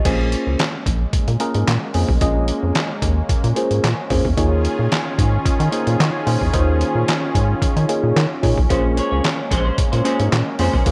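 A light reverb and digital ambience lend this short cut from a longer piece a late-night, funky sheen. It is early-eighties boogie funk in a straight 4/4, driven by a gritty, pitched-down, sampler-style trip hop drum kit that sits up front. The kit is compressed and tape-warm, as if re-recorded in a large room, with a thumpy kick, medium-tuned snare, handclaps, hi-hat and crash cymbal. Underneath, a rubbery square-wave bass bounces with a dark, resonant filter pluck, while a worn, slightly out-of-tune tine electric piano plays accompaniment through a phaser. A bold, brassy analog pad of detuned sawtooth holds sustained chords with subtle chorus and vibrato as the harmony moves from Bbm9 to Eb9sus4 and back. At 8.7 seconds a clean, picked semi-hollow electric guitar joins with a riff coloured by analog chorus.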